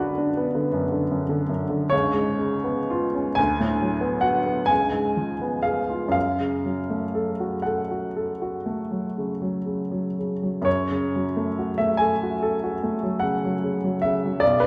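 A clear upright piano carries this short romantic nocturne alone, its woody, intimate tone sitting up front with the clatter of its action audible beneath the notes. Set in F# minor and 9/8, the music moves slowly and freely, between 38 and 54 dotted-quarter beats per minute, with a rubato that lets phrases stretch and breathe in a yearning, wistful mood. The harmony drifts from B minor through C#7 and D6 before returning to C#7 and settling on F# minor around 6.1 seconds, while the playing spans from deep B1 up to G#5. A recital hall's lingering reverb surrounds the instrument, heard from further back in the room with a softened, dark top end. At 10.7 seconds the opening idea begins again, and this fragment of a longer piece breaks off at 14.7 seconds.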